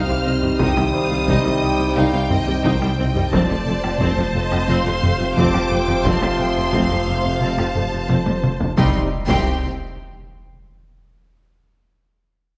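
A tense, vast cinematic film score blending orchestra and electronics, moving at 88 BPM in C dorian over Cm and F chords, with a huge, bright impact at the start and again from 8.8 seconds. Lush bowed violins carry the melody and a second line above a focused viola accompaniment, while mellow French horns and soft-attack trombones hold sustained chords in the background, and a very quiet soft, round pluck plays arpeggios with chorus. The low end rumbles with a deep, beating, saturated saw bass, a dark cello section and woody double basses, and a vintage, band-limited taiko ensemble struck with hard sticks drives beneath them, adding a fill just before the closing impact, all set in a moderate scoring-stage reverb.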